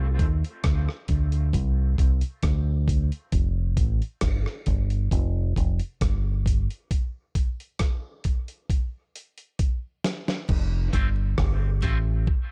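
Hypnotic, heavy dub reggae excerpt at 67 BPM, where a dark, round fingered electric bass and a gritty, compressed sampler-style drum kit with a thumpy kick sit up front through an echo-heavy break with a drum fill from 8.7 s, before the harmony lands on F at 10.5 s and barely audible congas and a soft, flute-like tonewheel organ with slow rotary speaker slip in alongside a twangy, slightly broken-up electric guitar treated with high-pass filtering and dub echo.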